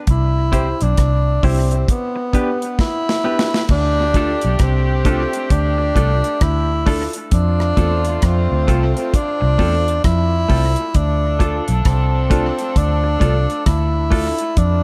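A light reverb and an echo-heavy mix give this short roots reggae excerpt an uplifting, warm glow at a relaxed 66 BPM in 4/4, with a swung sixteenth-note feel. Up front, a mellow tenor saxophone with a smooth top carries the melody from the very start, its phrases trailed by tape echo, while a dark, round, foam-muted electric bass and a dry, acoustic reggae drum kit with a tight kick, medium-tuned snare, rim clicks, hi-hat and crash anchor the groove. Further back, a clean, compressed semi-hollow electric guitar adds echoed accompaniment, and a boxy concert grand piano with deep bass and long sustain punctuates with stabs. After a drum fill from 2.8 to 3.7 seconds, the harmony moves from C and G into Dm and F, and a punchy, tight horn section with light vibrato enters at 3.7 seconds to play a second line alongside the saxophone, also colored by tape echo.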